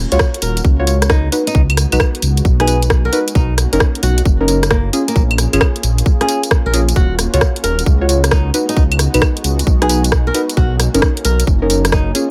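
A smooth, detuned sawtooth pad with chorus sits in the background beside a dark, rumbling detuned saw bass, both pumping to the sidechain, as this moody, bouncy cut from a longer UK garage two-step track opens at 133 BPM in Eb minor with a 66% sixteenth swing. A tight, tape-warm electronic kick and a layered garage kit of claves, hi-hat, rim click and tambourine sit up front, while a deep, nasal chord stab coloured by chorus and cassette tape outlines Ebm9, Db7sus4, Bmaj7 and Bbm7. From 0.4 seconds a fingerpicked acoustic flamenco guitar carries the melody through tape echo, within a digital ambience.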